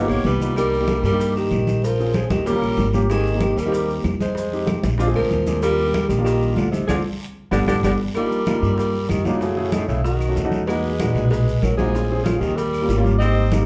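Heard from further back in a club-like room with a wet reverb, this sophisticated, danceable Afro-Cuban jazz excerpt at 190 BPM in Eb major sets a mellow, subtoned alto saxophone melody with vibrato and scooped notes above an edgy, forceful tenor saxophone second line, carried by warm, natural grand piano accompaniment, a dark, thumpy pizzicato upright bass up front, and background percussion of ringing hard-hand congas, tight high-tuned bongos, woody claves, raspy guiro and grainy maracas, with a drum fill and band accent from 6.9 to 8.2 s leading into a new section of shifting jazz harmony.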